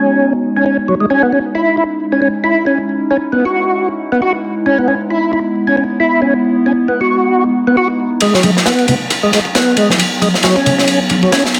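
Swaggering and funky, this 135 BPM breakbeat cut in G# minor swings on a lightly overdriven, key-clicking tonewheel organ riff through a slow rotary speaker and a warbling, nostalgic tape-like pad with phaser and sidechain pumping, both under filter sweeps over G#m7 and C#madd9, until a punchy, gritty breakbeat kit with dark cymbals arrives at 8.2 seconds and soft-handed, damped congas join at 8.4 seconds for a build-up in a small room.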